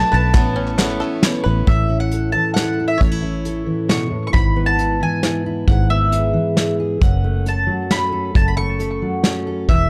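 A dark, warm small-room sound frames this anthemic, hopeful indie folk excerpt in 3/4 at 135 BPM in A major. A bright, woody mandolin with double strings carries the melody up front through analog delay, while in the opening 1.7 seconds a picked acoustic guitar, a concert grand piano with audible action noise, a distant bowed string section with vibrato, a twangy banjo playing arpeggios and crisp background handclaps fill out the arrangement before a full-bodied jumbo fingerpicked acoustic guitar takes over the accompaniment. Underneath, a round, foam-muted fingered electric bass and a punchy brush drum kit drive the music as the chords move from Aadd9 through E/G# to F#m.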